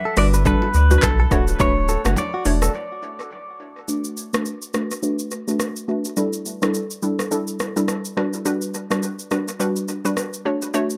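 Afrobeats at 105 BPM in B minor with a mellow, sultry swung feel, this excerpt opens with two bright, twangy clean electric guitars, one carrying a phased, tape-echoed melody until 3.6 seconds and the other a short riff, over a hollow, detuned square pluck with chorus and a filter sweep from 3.9 seconds, a deep, thick saturated sub bass, very quiet hard-handed bongos and congas, and an electronic afro-pop kit with a deep kick, metallic hats, handclaps, rim click and shaker that carries on after a break at 2.7 seconds, all in an echo-heavy mix moving through Gmaj7, Dmaj7, Bm7 and A7sus4.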